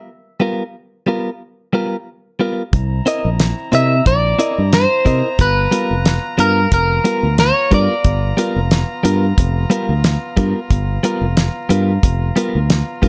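A twangy, slightly broken-up electric guitar carries the melody at the front of this rollicking yet laid-back soul blues excerpt, picking its line until 8.7 seconds. From 0.4 seconds a clean, compressed electric guitar, recorded direct, adds picked stabs with a slapback echo. At 2.7 seconds the rest of the band joins: a warm fingered electric bass up front, a dry 70s drum kit with a fat snare, tight kick and hi-hat, and a punchy horn section holding sustained chords with light vibrato, sitting lower in the mix. The groove moves at 90 BPM in 4/4 with straight eighths and a gentle swing on the sixteenths, over G7#9 and C7#9 chords. The sound is close and dry, with little reverb, and the clip is cut from a longer piece.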